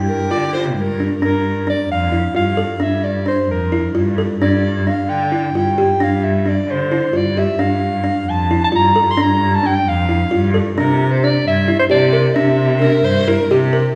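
Contemporary chamber music in an uneven 7/8 meter, this excerpt feels urgent and pensive, moving through a short opening passage into a longer second section. A breathy soprano saxophone carries the melody in a dark, jazz-inflected voice, with vibrato and scooped notes. Beneath it, a buzzing kalimba spins out arpeggios with a woody, hollow-box thumbnail pluck and a vintage, band-limited tone. A single rich cello holds the bass with expressive vibrato and portamento. A dark viola, played sul tasto with an airy bow and soft attack, adds an intimate second line only from 0.1 to 1.2 seconds and again from 12.8 seconds. Everything sits in a wet recital hall reverb that gives the ensemble the resonance of a church or concert hall.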